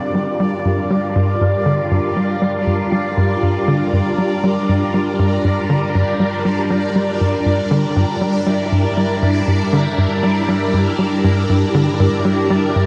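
Cosmic and hypnotic, this short cut from a longer piece of ambient, sequencer-driven space music moves at 119 BPM in G dorian, resting on a single Gm7 chord throughout its 12.9 seconds. A tight, punchy sequencer bass riff with a dark filter pluck and delay drives beneath a swirling, up-front phased string machine holding bright sustained chords, while a bubbling, resonant texture of random filter steps sparkles on high D5 and a detuned analog drone on G2 evolves in the background with tube saturation. The whole mix sits in a huge, wet reverb and carries the worn, warbling pitch drift of old cassette tape.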